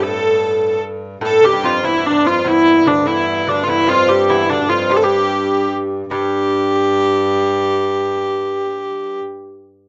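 A clear, nasal hurdy-gurdy leads this festive medieval dance, its airy, earthy wheel-bowed melody sitting up front across the whole 9.2-second fragment cut from a longer piece. Beneath it, a delicate fingerpicked lute plays a low second line on doubled nylon strings, some of them octave-doubled. Further back, a rich viola da gamba holds a single low drone with a reedy gut-string tone, light vibrato and a distant, ringing quality in period style. The compound 6/8 metre, played with a straight feel, gives the music an ancient, celebratory character, and a new section begins at 6.1 seconds. A moderate small-room reverb surrounds the players, and the rough home-demo mix keeps the top end dull and rolled off.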